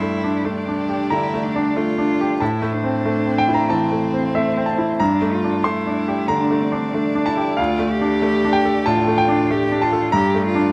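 A bright, polished baby grand piano carries the accompaniment from the first moment, while a single close, smooth-bowed cello with light vibrato sings a second line and a focused chamber string section holds sustained chords in the background, giving this short fragment of longing, fragile neoclassical music a rubato feel around 93 BPM in 4/4, set in G dorian with A4 tuned to 441 Hz, as the harmony moves through Gmadd9, Am, Gmadd9 and Dm before settling back on Gmadd9 at 10.1 seconds, all in a close, detailed sound with light reverb.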